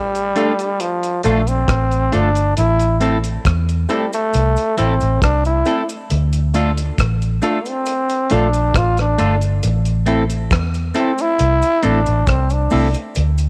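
A growling, raspy trombone solo opens this laid-back, meditative roots reggae excerpt over a dark, round, foam-muted fingered bass, joined by a cloth-damped, thuddy drum kit with gritty 12-bit sampler texture on hi-hat, kick and rim click, a soft cabasa in the background, clean picked electric guitar and hollow, chorused organ stabs from 0.4 seconds, all moving between Dm and Am in a small, lightly reverberant room.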